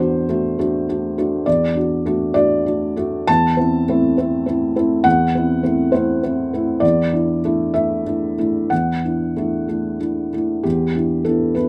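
A felt-muted upright piano plays alone, its dark, intimate tone placed up front with the mechanical noise of its action clearly audible. This is melancholic, reflective neoclassical minimalist piano in 6/8, moving at a slow 61-68 BPM counted in dotted quarters and played with a rubato feel. The instrument is tuned to A4 = 441 Hz and spans E2 to A5, its thick felt giving every note a soft, mellow edge. The harmony moves from Dadd9/E to Am/E at 3.3 seconds, returns to Dadd9/E, then shifts to Em7 at 10.6 seconds as a new section begins. Light reverb adds a natural sense of space to this brief passage, which is cut from a longer piece.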